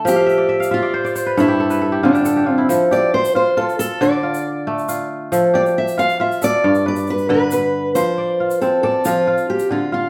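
A live room sound with a generous, wet studio reverb surrounds this short cut from a longer piece of West African traditional music. It is flowing and hypnotic at 91 BPM in a straight 12/8 feel, set in F lydian. Up front, a fingerpicked steel-string acoustic guitar carries the melody with a bright, fresh-string tone and takes a solo through the first 8.0 seconds. Beside it, the kora spins ringing, crisp arpeggios across its range, adding a fill near the start that runs to 2.7 seconds. A tube shaker sits close and dry, its grainy texture well behind the strings. The harmony moves from an open start through G, F, D minor and back, and a new section begins at 8.0 seconds as the chords shift to F5 and D minor.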